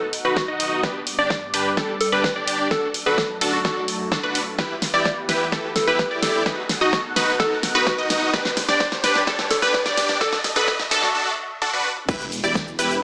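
A soft, round FM synth lead with a warbling vintage tremolo and tape echo carries the melody of this emotional, anthemic festival progressive house build-up in E minor at 128 BPM, over a lush background pad, a bright detuned pluck arpeggio and a huge, up-front compressed supersaw riff, all pumping to the sidechain, while a big-room kit with a huge snare, fills and a punchy layered kick drive forward, a very quiet riser and sub drop hover beneath, and after a brief break at 11.1 seconds a thick, mellow detuned saw bass lands on the impact at 12.1 seconds, all in a wet digital room with a small-speaker tint.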